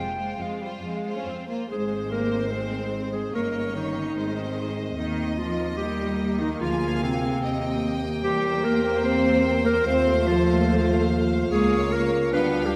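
Urgent and dramatic, this fast romantic orchestral movement at 146 BPM in Ab major moves with rubato through a concert hall's moderate reverb, opening on F minor before turning toward Ab at 1.7 seconds. A lush, focused violin section carries the melody over a brighter, more intense second violin line, a close viola section in the background, smooth cellos and warm double basses with vibrato, while a pure, mellow flute offers a brief tongued phrase before dropping out at 1.3 seconds. From 1.7 seconds a solo clarinet with a smooth classical tone adds its own line and a background French horn section holds mellow sustained chords as the harmony moves through Eb, C7 and F7 toward Bb minor in this excerpt from a longer piece.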